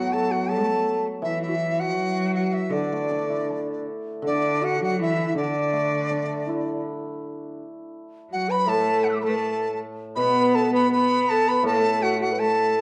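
From the first moment, a buzzing, airy dizi carries the melody up front with vibrato and a crisp chiff, joined by a pure, end-blown xiao and a rich, focused bowed cello as second lines over a shimmering, ringing hammered dulcimer, in a pastoral yet festive Chinese chamber piece with a free rubato feel, dark production and moderate recital-hall reverb, cut from a longer work.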